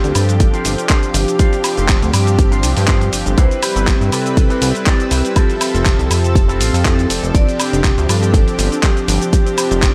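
Groovy and sunny, this nu-disco excerpt pairs a bright, ringing vibraphone melody with an analog delay over a warm, detuned, tape-tinged analog pad that pumps against the beat, a lush, very quiet string machine holding sustained chords, and an up-front, glossy chorused synth bass, while a gritty, compressed sampler-style kit of handclaps, hi-hat, shaker and woodblock sits beside a punchy electronic kick; a twangy envelope-filtered electric guitar riff with 12-bit grit stays in the background until a clean guitar fill at 6.4 seconds hands over at 7.3 seconds to a dark, soft round pluck playing quiet arpeggios.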